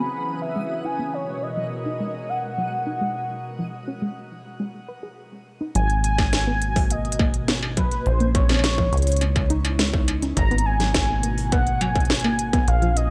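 Intricate and eerie, this short IDM passage is cut from a longer piece. It opens on a glassy, ethereal FM pad holding mellow sustained chords, while a warbling, lo-fi pluck with a cassette-tape grain spins arpeggios beneath a velvety, detuned synth lead that carries the melody up front with vibrato and a shimmering reverb tail. Both the pad and the arpeggio sound move through filter sweeps in this opening stretch, and a reversed, granular texture drifts in at the top and lingers until 3.4 seconds, when a brief break begins. At 5.8 seconds the groove arrives: a rubbery, resonant acid bass with a saturated, dark bite, and an industrial kit of clanging snare, smooth filtered hats and struck metal wrapped in gated reverb, joined soon after by a distorted electronic kick. Over shifting minor chords, the whole has a bright 1980s-style digital sheen with only light reverb in the room.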